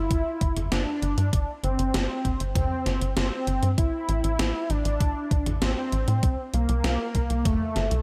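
Driving and nocturnal, this synthwave excerpt moves at 98 BPM in a straight 4/4 in G dorian, passing from G5 to Am at 3.8 seconds and on to C5 at 6.2 seconds. A thick, bold unison lead of detuned, wave-folded sawtooth, triangle and sine tones carries the melody up front with a bright, sustained vibrato, analog chorus and delay. Beneath it, a tight, nasal sequencer bass with a punchy filter pluck pumps with sidechain compression alongside a thumpy, tape-warm electronic kick from 0.1 to 7.6 seconds, while a gated 80s digital drum machine adds hi-hat, toms and a gated-reverb snare in an otherwise dry mix.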